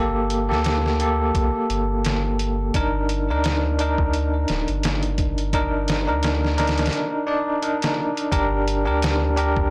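A bell-like tine electric piano, shimmering with tremolo, tape echo and lo-fi sampler grit, and a deep, round dub sub bass with tube saturation open this smoky, brooding swung trip hop fragment over Gmadd9 and Ebmaj7, joined at 0.3 seconds by a pitched-down, gritty sampler drum kit with a thumpy kick and a small-room snare, all under a blown-out, overdriven sheen with light reverb, before a break at 6.9 seconds and a final turn to Gm.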